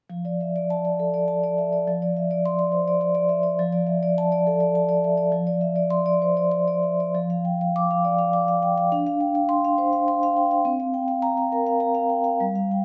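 A solo vibraphone played with soft mallets opens the recording, sitting up front in a wet stone room whose reverb lets each note hang in the air. This contemporary classical piece moves in a rubato triple metre, and its mood is warm and flowing. The vibraphone's tone is mellow yet metallic and ringing, shimmering with a fast motor vibrato as it ranges from F3 up to D6. In the first section the harmony rocks between F6 and Dm9/F, and at 7.1 seconds a second section shifts through Fsus2 and Dm7 before resting on an unresolved C7sus4. The passage is cut from a longer piece, ending at 12.8 seconds while that suspended chord still rings in the room.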